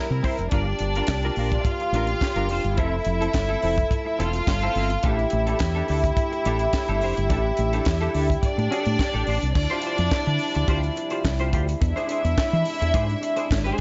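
A dark, soft-attacked string section and a French horn section open this disco excerpt together, the bowed strings playing sul tasto as a smooth, floating second line while the horns hold sustained chords with light vibrato in a classical style. Within a fraction of a second a round, punchy fingered electric bass and a tight funk drum kit join at 106 BPM in a straight 4/4 in D minor, the dry kit pairing bright cymbals and a high-tuned snare with handclaps, hi-hat, crash and a tight kick. A clean, compressed semi-hollow electric guitar adds hollow-bodied accompaniment treated with ensemble chorus, while the bass and strings sit up front in the mix. The harmony moves through Gm7, Fmaj7 and A7sus4 before shifting at 9.6 seconds to Dm11 and then E7b13, and at that point a grainy, very quiet egg shaker appears, distant as if in a large room. Light studio reverb and a rounded top end, with nothing above 7.7 kHz, give the driving, danceable groove a smooth, polished finish.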